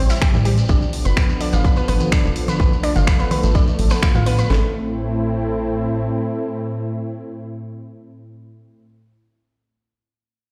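Dark and cinematic, this melodic techno fragment opens on a drop where a punchy, overdriven kick and cracking snare sit up front beside congas, finger snaps and pumping hi-hats, joined by a grainy, distant shekere, a tight sawtooth sequencer bass and a bright, detuned analog pluck arpeggio with tape echo, under a smooth, warbling vintage pad whose chorused chords sustain alone from 5.9 s until 8.9 s, ringing through a stone room as if blasted on a big sound system.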